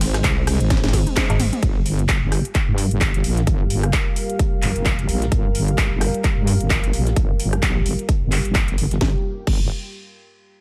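A gritty, bouncy bass house excerpt at 130 BPM in G phrygian opens straight on a drop over an Ab chord. A heavy, saturated, up-front wobble bass pumps beneath a deep, moody analog pad, with a punchy electronic kick from 0.2 s. A house kit of cracking snare, metallic hats, claps, rim clicks, toms, ride and crash sits over a very quiet, tape-warm sampler-style kit of hi-hat and snare, all on a swung 16th groove. A drum fill runs from 0.7 s, with a band accent at 1.2 s, and a brief metallic FM bass note lands at 1.3 s. From 1.6 s the harmony moves to Gm7 as a filter sweep runs across the wobble bass, with digital ambience around the mix and studio reverb on the kick and house kit.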